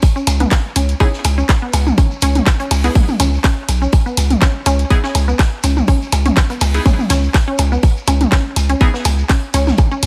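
A tight, up-front electronic kick, layered and tape-warmed, drives this quirky, sparse minimal techno excerpt at 123 BPM in 4/4 with a light 16th-note swing, set in C# minor. Beneath it a deep, punchy sine sub bass enters at 0.3 seconds, saturated and sustained with a pitch-drop attack and sidechain pumping, holding between B1 and C#2. A juicy, squelchy blip pluck of detuned square and sawtooth waves works a narrow B3 to C#4 riff through chorus, delay and pumping, while crisp, detuned wavetable chord stabs with a bright filter pluck appear from 1.0 to 8.9 seconds, washed in delay. The rhythm is filled out by a layered garage kit of handclaps and hi-hat, electronic percussion blips and toms with delay re-recorded in a small room, and a vintage acoustic kit of hi-hat, snare and tambourine sitting in the background with a rolled-off top. A grainy, mellow shekere sounds distant in a large room, and the whole track sits in small room ambience.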